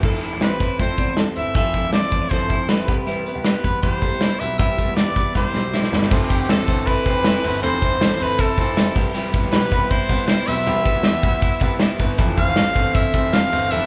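A brilliant, punchy trumpet carries the melody up front with pop-style vibrato from 0.4 seconds, over a breezy, youthful jangly indie pop groove at 158 BPM in straight 4/4 that moves between Fmaj7 and Cmaj7. A twangy, compressed twelve-string electric guitar plays arpeggios, a full-bodied fingerpicked dreadnought acoustic guitar accompanies in the background, and a clear, vintage grand piano takes the bass line, while a loose indie drum kit with a tight kick and medium-tuned snare sits up front and plays a fill at 5.4 seconds. A sparkling glockenspiel with hard plastic mallets adds a very quiet second line from 2.3 seconds, and a jingly tambourine joins at a very low level. The band sounds live in one room, with moderate large studio reverb and vinyl crackle, in a passage cut from a longer piece.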